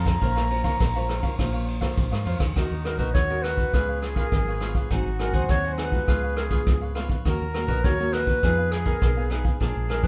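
Nostalgic and yearning, this excerpt of samba and choro moves at 102 BPM in a straight 4/4 feel in Eb minor. A breathy flute with a soft attack carries a solo for the opening 2.6 seconds, then continues as a second line once a mellow, smooth-topped clarinet takes the melody at 2.9 seconds. Underneath, a crisp picked cavaquinho and a fingerpicked nylon-string guitar supply the accompaniment, while a fingered electric bass with a round, foam-muted tone holds the low end. A vintage brush drum kit, sounding roomy with dark cymbals and a punchy kick, plays hi-hat, kick, ride and rim click from a small-room perspective. The harmony moves from Bbmadd9 through Ebm7, Db7 and Ab7, back through Db7 and Ebm7, before arriving at Fm7b5, all framed by light reverb.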